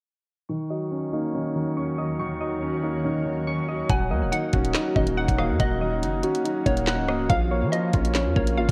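Ominous and menacing, this half-time drill excerpt opens under a filter sweep with a boxy, dark grand piano and gentle, round electric-piano-like synth keys arpeggiating through a chorus and tape echo, while a blurred granular cloud pad drifts in the background from 1.4 seconds, until at 3.9 seconds a heavy, distorted 808-style bass and an overdriven drill kit with a knocking kick, woody snare, bright hats, claps and rim clicks arrive up front, joined by a hollow, bouncy square pluck playing a second line, the whole mix carrying the warble and pitch drift of worn cassette tape.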